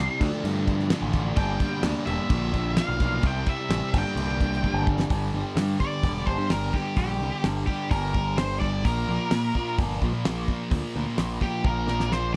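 Two sludgy, overdriven guitars, a growling picked bass and an octave-fuzz lead guitar open this gritty, swaggering classic rock passage together, with a damped 70s drum kit joining at 0.2 seconds. The picked riff guitars carry a warm grit, one sitting further back in the mix, while the bass sits up front with a bright, amped bite. The drums are acoustic, warm and dry, with a fat snare, a tight kick and cymbals kept shadowy by a rolled-off top, and drum fills mark the turns of the phrase. From 5.1 seconds the dark, distorted lead breaks into a solo over power chords, running to the end of this cut from a longer piece. The recording has a dry, close 1970s studio sound with little reverb.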